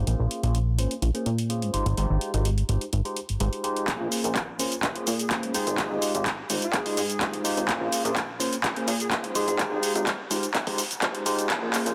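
Filtered disco house in F minor at 126 BPM, this groovy, funky excerpt rides up-front overdriven analog drum-machine handclaps, hi-hat and shaker, a plucky, wave-folded analog bass and a bright, barky tine electric piano with phaser, the bass and piano both pulsing with sidechain pumping over a Bbm9 to Fm7/Ab cycle, before a layered electronic kick and a barely audible tube shaker join at 3.9 s for a build-up with a filter sweep and drum fill, while a background horn section with light vibrato, 12-bit sampler grit and tape echo carries the melody from 5.1 s to 10.0 s.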